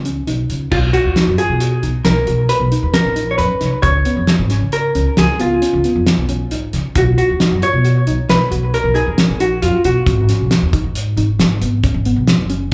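Progressive instrumental band music in 7/4 at 135 BPM, tense and brooding, heard as a short cut from a longer live gig through the venue's PA with a moderate club reverb and a dulled top end. A dark, clean hollow-body jazz guitar carries the melody up front, treated with plate reverb, slapback and tape echo, until it drops out at 10.7 seconds, while a woody pizzicato upright bass and a cloth-damped, thuddy kit with a fat snare, tight kick and gritty, saturated character drive the groove. Beneath them a soft, round pluck with chorus plays arpeggios in the background over chords moving from Dbsus2 through Bmaj7 and Db7(no3) to B and Abm7.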